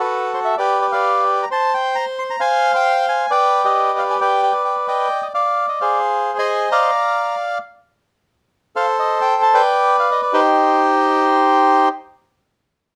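Tango in a passionate, dramatic mood, played with a rubato feel by a solo bandoneon whose reedy, dark, smooth voice sits up front, ranging from Eb4 to C6 until it stops at 11.9 seconds. The harmony moves through minor colours such as Cmadd9, Fm7 and Am9b5 before settling on Cm. Moderate studio reverb surrounds the instrument in a rough home demo mix, and the recording is cut from a longer piece.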